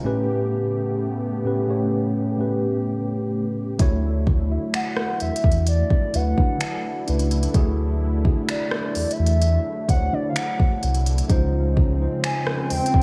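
Tender and dreamy, this contemporary R&B excerpt opens with a clean tine electric piano and a detuned sawtooth analog pad with chorus holding soft, sustained chords. At 3.8 seconds, a deep, full sine sub bass with its octave and a produced electronic kit of finger snaps, smooth hi-hat, soft kick and rim click arrive up front. At 4.7 seconds, a hollow, woody clarinet-like synth lead enters with vibrato, chorus and digital delay, while light reverb lends a small-room ambience and an electronic swell sits in the background from 12.0 seconds.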